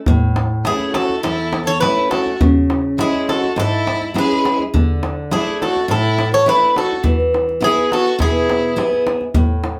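A straight 4/4 pulse at 104 BPM drives this hopeful Greek folk clip in A major, set by a big, deep darbuka with a clay shell and natural skin, its sound compressed and saturated and placed up front. A picked steel-string acoustic guitar with a full-bodied dreadnought tone and audible finger squeak carries the accompaniment from 0.1 s, moving through A, C#m, Dsus2 and E. At 0.7 s the Greek bouzouki takes the melody, its doubled strings ringing metallic with some octave doubling, sitting close to the listener. A single bowed violin joins at the same moment with a clear, focused second line, sung with vibrato just under the bouzouki. The band sounds as if heard from further back in a studio room with a short, wet reverb, giving the whole a warm glow, and the passage is cut from a longer piece, ending at 9.8 s.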